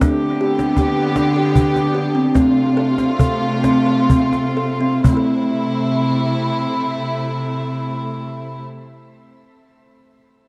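This world meditative excerpt for tuned percussion moves gently in 6/8 at 40-53 BPM in A minor, easing down in tempo through its opening 5.1 seconds as the chords pass from G to F before settling on A minor. A woody, ringing kalimba plays arpeggios through tape echo and shimmer reverb, while an intimate, up-front chamber string section holds sustained chords with light vibrato and a soft sul tasto tone, also bathed in shimmer. A snappy cajon played with soft hands sits close in the mix until it stops at 5.5 seconds, and the whole cassette home recording carries a wet spring reverb and the feel of a small room.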